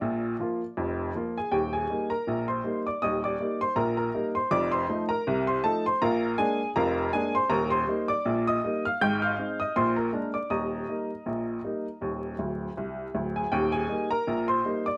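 A worn, woody, slightly detuned upright piano plays cheerful, lively ragtime alone in Eb major at 80 BPM with a lightly swung 2/4 feel, its action noise audible and its long sustain sitting up front in light reverb under vinyl crackle, and a fill arriving at 12.4 seconds before this short cut from a longer piece ends at 15.0 seconds.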